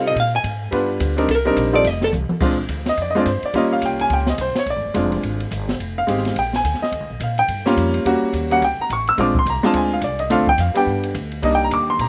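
The sound is dry, with barely any reverb and an open-air quality that gives the instruments little room ambience. This excerpt of small-group swing and bop moves at a brisk 213 BPM in 4/4 with a relaxed, swinging feel, centred on Bb mixolydian. A vintage hollow-body electric guitar, dark and clean with a slapback echo, opens with a short picked melodic solo that ends at 2.1 seconds, the same moment the drums play a fill. A clear, up-front baby grand piano with short sustain comps throughout over chords such as Bb7, Eb7, Fm7 and Edim7, while a woody pizzicato upright bass on steel strings anchors the low end. The drum kit enters at 0.2 seconds and sits back in the mix, with boomy kick, high-tuned snare, toms, hi-hat, and smooth, dusky ride and crash cymbals whose top end is rolled off.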